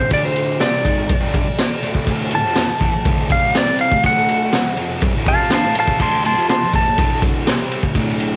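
A clean, fingered lap steel carries the melody with slide and volume swells until it drops out at 7.2 seconds and leaves the rest of this rowdy, raw garage rock fragment to the rhythm parts. Beneath it, a bright, double-tracked fuzz guitar picks a compressed, distorted riff with cassette-tape grit, while an up-front acoustic kit in a small room plays a boomy kick, medium-tuned snare, ride and crash with a saturated, rolled-off top. The straight 4/4 groove feels like a dry, home cassette recording.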